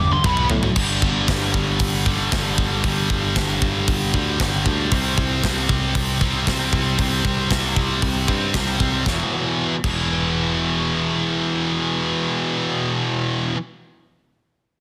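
A drum fill opens this relentless, aggressive heavy metal excerpt, cut from a longer piece in E minor at 116 BPM in a straight 4/4. Two bright, high-gain distorted electric guitars play the riff across the whole clip, one sitting up front, moving through B5, G5 and C5 power chords before landing on E5 at 9.1 s as a new section begins. Beneath them, a picked electric bass, direct and amped with a foam-muted, growly tone, holds down the low end. The acoustic kit is tight and mid-forward, with bright cymbals, a medium-tuned snare, toms, hi-hat and a tight kick given soft clipping, heard in a big room and placed up front until it stops at 10.0 s. The sound is dry and dense, with a heavily limited modern master.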